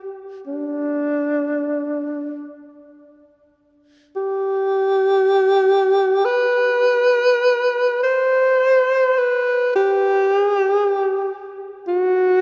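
A solo alto saxophone with a warm, vibrato-laden jazz tone sits up front in this austere, calm Japanese traditional piece, moving in free time through a G ryukyu scale between D4 and C5, tuned to A4 = 438 Hz, with a dark production and a wet church reverb of 3.8 seconds surrounding the 12.4-second fragment cut from a longer performance.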